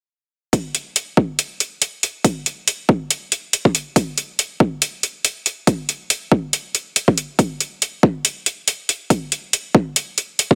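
Meditative and cavernous, this excerpt from a longer piece of deep dubstep moves at 140 BPM in 4/4 with a half-time feel and a 56% swing on the sixteenths. It is built from drums alone: an electronic kick drum and an electronic hi-hat, both entering at 0.5 seconds, with the hi-hat running to 10.5 seconds and the kick to the close at 10.6 seconds. The kick is deep, layered and overdriven, shaped by a high-pass filter and set up front as the louder of the two parts. The hi-hat carries a metallic, overdriven edge and also sits forward in the mix, beneath the kick in level. Little reverb surrounds them, and the master is dense, heavily limited and modern.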